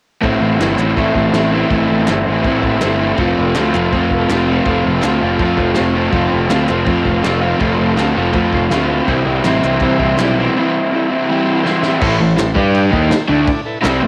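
A straight 4/4 at 163 BPM in A minor pushes this raw, menacing garage rock snippet, cut from a longer piece, as an overdriven, double-tracked garage guitar riff sits up front with cassette-tape grit over Am, F and C, a bright, fuzzy picked bass plays underneath, a vintage kit with a punchy kick, medium-tuned snare, crash cymbal and rolled-off top keeps to the background, crisp, dry group handclaps join at 0.6 s, and a very quiet, buzzy combo organ holds clean sustained chords with light vibrato, until a drum fill at 11.6 s leads into a brief closing passage moving from Am to G5 and back, all in a light, small-room home cassette recording.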